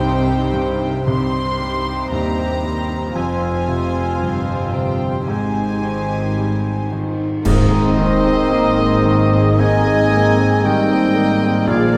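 A scoring-stage sound with moderate reverb frames this uplifting, tender cinematic film score excerpt, where floating sul tasto violins carry the melody over a second violin line, clear grand piano, dark viola, ringing concert harp arpeggios, woody double basses and rich cellos, with cymbal swell, clash cymbals and bass drum entering at 3.1 seconds before a bright oboe, mellow clarinet, hollow flute ensemble, French horn chords and soft-mallet timpani join at 7.5 seconds for a full orchestral accent.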